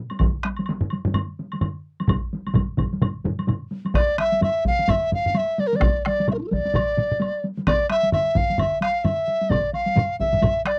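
A ceremonial, powerful Japanese taiko ensemble piece in 4/4 at 129 BPM with a swung 16th feel, speeding up throughout, opens at 0.1 s with a vintage, band-limited taiko ensemble on hard sticks and a woody woodblock, joined almost at once by compressed, saturated solo taiko drums and a close, dry ensemble on heavy sticks, with a further heavy-sticked ensemble in a small room arriving at 2.1 s, before a mellow large dizi with a buzzing membrane, vibrato and rolled-off highs enters up front at 3.9 s, ranging from D4 to F5 over light reverb in a 1970s-style studio sound.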